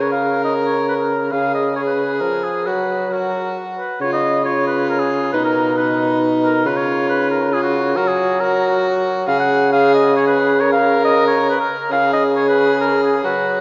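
Courtly and rustic in spirit, this renaissance-style consort dance moves in 3/4 at 136 BPM with a straight feel, taken from a longer piece. A mellow oboe carries the melody with light vibrato, a soft attack and a smooth top, while a violin plays the second line with a gut-string, reedy period tone and its own light vibrato. Beneath them a solo bassoon supplies the bass with vibrato and a distant, roomy quality, though it still sits up front with the other two. All three parts play throughout the 13.6 seconds, stating a short opening phrase and then a longer repeat of it from 4.0 s. The harmony circles around F# and C#, touching B along the way, and the whole sits in a wet church reverb that gives the dark production a generous, lingering bloom.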